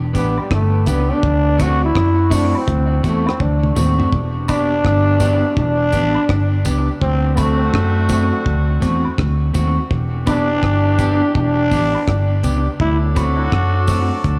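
A foam-muted, round electric bass opens this meditative, laid-back roots reggae excerpt in E minor at 83 BPM, quickly joined by a clean, picked electric guitar with spring reverb and dub echo, a dark, dry drum kit with a tight kick and analog delay, tambourine and woodblock in the background, and a raspy, growling trombone with scooped notes. After a drum fill, a mellow, distant horn section enters at 4.1 seconds, all set in an echo-heavy mix that moves between Em7 and D7.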